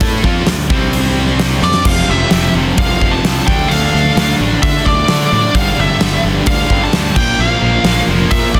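A huge arena drum kit hits up front from the very first beat, its punchy kick, fat snare, bright cymbals and pumping hall sound driving an aggressive hard rock groove at 130 BPM in straight 4/4, in D minor. Underneath, a growly, punchy fuzz-toned fingered bass holds down the low end, while three picked electric guitars play riffs: a crunchy overdriven part and a double-tracked distorted one, both very quiet, plus a tight distorted guitar sitting in the background. A clean tonewheel organ holds sustained chords far down in the mix, adding key click, chorus vibrato and the churn of a fast rotary speaker. At 1.6 seconds a drum fill brings in a dark, nasal lead guitar through a parked wah, overdriven and placed up front as it carries the melody. The harmony moves from D minor through power chords on C, F, G and B-flat, and the whole excerpt sits in light reverb under a dense, heavily limited modern master.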